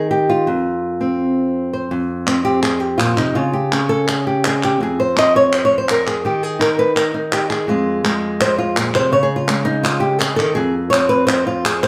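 Heard from further back in a reverberant studio, this passionate, intense flamenco passage in F minor at 166 BPM, cut from a longer piece, features an up-front, fingerpicked acoustic flamenco guitar with warm tone and plate reverb that launches into a solo at 1.9 seconds, joined at 2.3 seconds by crisp palmas hand claps with a live-room sound.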